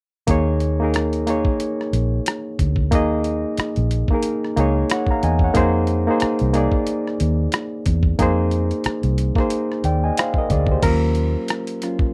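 A barky, lightly overdriven reed electric piano supplies the accompaniment in this sultry, late-night R&B and neo-soul excerpt at 91 BPM in Eb dorian with a swung sixteenth-note feel, riding over a dark, round, foam-muted electric bass and a gritty, pitched-down boom bap sampler-style kit of thumpy kick, hi-hat, rim click and crash, all three up front in a dry, close 1970s-style studio sound, before the piano takes a brief solo from 10.8 seconds and the bass drops out at 11.3 seconds.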